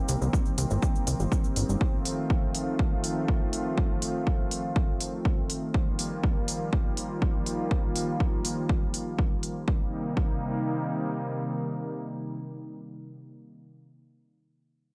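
A mostly dry mix with little reverb frames this dark, dramatic melodic techno excerpt at 122 BPM in C dorian, tuned to A4 = 445 Hz. A detuned, warbling analog pad holds lush chorused chords through Cm7, F7 and Ebadd9 with sidechain pumping, while a punchy, ring-modulated sawtooth bass and a grainy, bright cabasa sound only briefly at the start, both ending by 1.8 s. An overdriven electronic kick and smooth hi-hats sit up front with small room ambience. The harmony returns to Cm7 at 9.7 s, the hats having dropped out at 9.5 s, and once the kick stops at 10.3 s the pad carries on alone.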